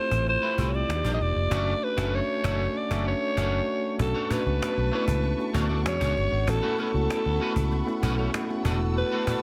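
A breathy, raspy alto saxophone carries the melody up front through a digital delay in this breezy, urban slice of polished 1980s jazz-funk pop at 97 BPM, cut from a longer piece and set in light reverb. Beneath it, a mellow tine electric piano with subtle chorus, a twangy, slightly broken-up electric guitar riff with ensemble chorus, a round, punchy foam-muted bass and a snappy cajon with snares move through chords such as Fmaj7, Dmaj7/F#, Bm9 and E13, with a band accent from 1.5 to 4.0 seconds. At 4.0 seconds a dark, woody studio string section enters with bowed, sustained chords that add a smooth, vibrato-rich layer alongside the horn.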